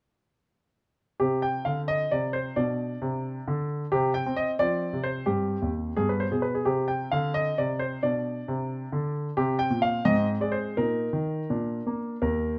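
Classical-period piano sonatina in C minor, moving in a rubato 6/8 at 88 BPM with a dramatic, restless mood, in a brief section cut from a longer piece. A solo grand piano with a clear, smooth, vintage tone and short sustain sits up front in light reverb, playing from 1.2 to 12.6 seconds across a range from Eb2 to G5. The harmony moves through a Cmadd9 opening and a Bm chord before a brief chordless moment, then passes through F5, Cm/G and G before closing on Ab, Bbsus4 and Bb.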